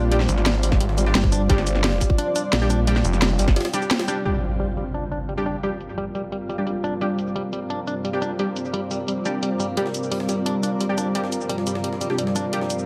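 Set in a lush hall reverb, this dark, tense slice of technical drum and bass opens straight into a drop, with a tight, up-front electronic kick and two heavy basses: a metallic, wobbling FM bass with chorus, and a snarling, growling distorted saw bass driven by overdrive. A layered drum and bass kit with a cracking snare, hi-hat, shaker and crash runs throughout under low-pass filtering, while a gritty, pitched-up jungle sampler-style kit with a high-tuned snare sits in the background, dropping out after the opening and returning at 9.8 s. Above the drums, a bold, punchy orchestra-hit-like synth stab punctuates the music with reverb and tape echo. A cloudy, evolving granular pad pumps to the sidechain, and a very quiet, moody ambient pad holds sustained chords beneath it. A twangy, direct-recorded clean electric guitar plays arpeggios through tape echo and sidechain pumping. After a short break from 3.6 s, an electronic impact lands at 4.3 s, and from there filter sweeps wash over the drums and the guitar as the track shifts into a sparser second section.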